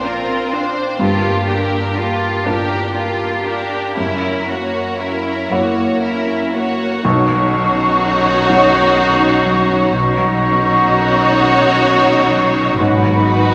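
Cinematic, emotional film score for orchestra, hopeful and moving, unfolding in a slow, rubato 6/8 at around 38-43 BPM, cut from a longer piece. From the start, a clear violin section carries the melody with smooth, even vibrato while a second violin section plays a focused second line up front beneath it, over a felt-muted upright piano whose soft, intimate tone and audible action noise sit in the background. A rich viola section with expressive portamento adds accompaniment, a concert harp rings out fingerpicked arpeggios, and bowed cellos, heard from a distance, join double basses in the background to hold the bass. At 7.0 s the harmony settles into B major, and a clear solo clarinet, an airy large flute ensemble with crisp attacks, and a very quiet, mellow French horn section join, the flutes and clarinet adding second lines while the horns sustain chords. Everything sits in a wet scoring-stage reverb that gives the ensemble a spacious, glowing sound.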